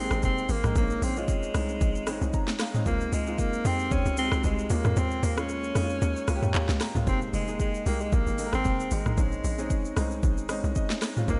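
Hypnotic and deep in mood, this amapiano passage, cut from a longer piece, drifts through a dreamy mix soaked in lush hall reverb, its top end gently rolled off. A breathy alto saxophone sits up front carrying the solo melody in a pop style, its vibrato trailing into tape echo. A warm, vintage baby grand piano supplies accompaniment over chords moving from Fm11 and Bbm11 to Dbmaj9 and Eb9sus4, adding short fills, the first at 2.1 seconds. Underneath, a tight, punchy log drum bass with an FM tone, a noise layer, a fast attack and decaying notes anchors the low end. The electronic afro-pop kit, also up front, blends a deep kick, sharp snare, smooth hi-hat, handclaps, rim clicks, shaker and toms with a swung sixteenth-note feel, and the kick drops out between 5.0 and 7.1 seconds.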